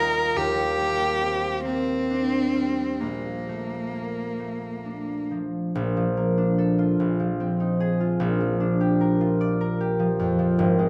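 A moderate recital-hall reverb, with a decay of about 1.8 seconds, surrounds this short cut from a longer classical piece, an impressionist duo for cello and harp in Bb major. The mood is pastoral and dreamy, with a slow, rubato pulse of roughly 42-51 dotted-quarter beats per minute in 6/8, and the instruments are tuned to A4 = 441 Hz. Up front, a single bowed cello carries the melody between Bb3 and Bb4, its tone rich, smooth and even, close-miked and shaded with vibrato. The concert harp accompanies from the start, fingerpicked and ringing, with a bright acoustic sound that reaches from Ab1 to D5 and sits a little louder than the cello. The harmony drifts through Ebmaj7 and Bbmaj7 while the cello sings, then moves to Ab69/Bb and Gm7/Bb. The cello stops at 5.3 seconds, leaving the harp alone until the end at 10.9 seconds.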